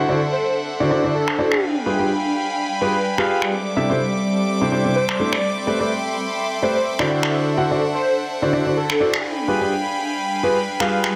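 Piano house at 126 BPM with a light swing, energetic and soulful, where an up-front grand piano riff with deep bass and vintage 12-bit sampler grit drives a progression from D9 through G7b9, C69 and Am11, framed by sustained, earthy violin chords with light vibrato, a blurred, evolving granular pad, an airy, dreamy lead melody carrying chorus, cassette tape character and dub echo that enters at 0.3 seconds, and layered electronic finger snaps arriving at 1.3 seconds, all set in a lush hall reverb in this short cut from a longer piece.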